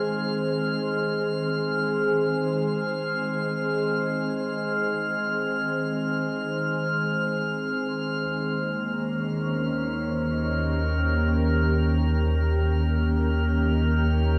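A dreamy mix soaked in a moderate plate reverb gives this serene ambient excerpt a soft, suspended glow. Up front, an ethereal FM pad holds slow-blooming chords with a long release, its ensemble chorus and built-in reverb lending a mellow shimmer. From the start, a calm texture of drifting glass harmonics hovers quietly high above, its sine tones chorused and trailing into their own reverb. At 8.2 seconds a round, deep analog bass enters with a fast attack and an evolving tone, grounding the music as the harmony moves from Ab over Eb to Eb7. The pad, bass and high texture then sustain together until the close at 14.4 seconds.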